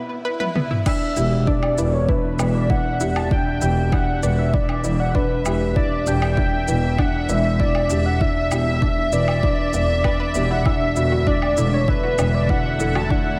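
A dreamy, reverb-soaked hall ambience surrounds this cinematic, melancholic piano-and-strings electronica at 98 BPM, opening on a brief electronic swell and a drum fill before the drop lands at 0.9 s, shifting from Em7 to Dadd9/E at 10.7 s. A soft, boxy felt-muted upright piano riff and a round, detuned analog pluck arpeggio in the background, both steeped in tape echo and shimmer reverb, sit under a velvety synth lead melody with chorus, vibrato and cassette-tape colour. Alongside them, a deep, tape-warm electronic kick and a layered deep house kit of crash, shaker, toms and woodblock play with a bright bowed double bass section on E1 with tube saturation and sidechain pumping, while a dark, sul tasto string section holds pumping sustained chords from 2.3 s.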